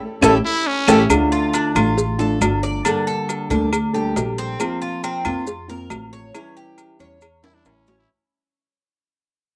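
A band accent on an A7 chord opens this danceable Cuban son and guajira clip in D minor at 137 BPM. A bucket-muted trumpet plays a short, veiled, jazz-style melody with scooped notes and light vibrato. A raspy, growling second trumpet joins at 0.5 seconds and returns near the close. Underneath, a fingerpicked nylon-string guitar provides accompaniment while a metallic, double-strung tres plays arpeggios, both over an up-front, woody pizzicato upright bass with tube saturation. Close, dry percussion fills out the groove: tight high-tuned cowbell, woody claves, grainy maracas, and ringing timbales and agogo bells, which play drum fills at the start and end. From 1.1 seconds the passage fades out through Dm, Gmadd9, Bbsus2 and back to A7, with the muffled, band-limited haze of a cassette home recording in a small room.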